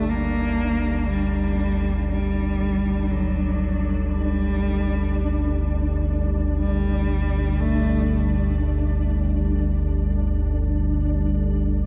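This dark ambient drone piece drifts in free time, cavernous and desolate, in a fragment cut from a longer work. A deep, ominous drone rumbles up front in the low register, while a moody, full-bodied pad with chorus holds sustained chords and fades in across the whole passage. A single bowed cello carries a smooth, even melody with vibrato, placed up front with delay, and it falls silent at 8.1 seconds. A grainy, flickering texture hovers on a single mid-register note and fades out over the course of the excerpt. The harmony rests on a G5 chord, and the whole is bathed in huge ambient reverb with a dark, rolled-off production that keeps the sound murky and enveloping.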